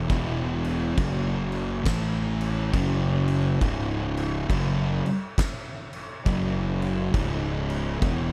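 A swung 4/4 groove drags along at a crawl in this short, sludgy and ominous stoner-doom fragment, lifted from a longer piece. A double-tracked, distorted fuzz guitar grinds out a low riff through E5, F#5, A5 and C#5 power chords, while a growly, overdriven fingered bass with a bright, punchy edge adds weight far beneath it. From 0.1 s an oversized low-tuned kit joins up front with a punchy kick, fat snare and shadowy crash cymbals, its pumping stone room adding to the dark, warm, light-reverb production.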